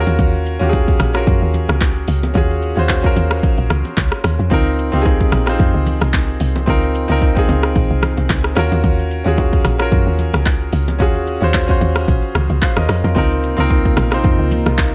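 Set in a digital ambience, this soulful amapiano excerpt moves at 111 BPM in 4/4 with a light swing on the sixteenths. A clear concert grand piano sits up front, intimate and polished, with audible action noise and long sustain as it plays the accompaniment over chords that alternate between Ebm9 and Dbmaj13. A woody log drum bass carries the low end with punchy, fast-attack notes that decay into a mellow tone. The deep house drum kit is electronic and layered, with a deep kick, metallic hi-hats, handclaps, rim clicks and shaker, all carrying a tape-warm edge. Very quiet bongos and congas add bright, hard-handed acoustic touches in a small room. At 13.2 seconds a hollow, flute-like pad enters in the background with soft, chorused chords.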